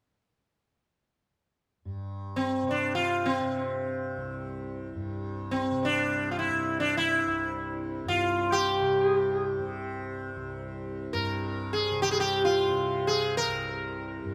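Closely miked with light reverb and fine detail, this serene, devotional Indian classical excerpt unfolds in free time in C major, as a softly plucked tanpura drone with a buzzing, bright hum enters at 1.9 seconds, joined at 2.4 seconds by an up-front sitar melody, its round, plectrum-plucked tone shimmering with sympathetic strings and trailed by tape echo.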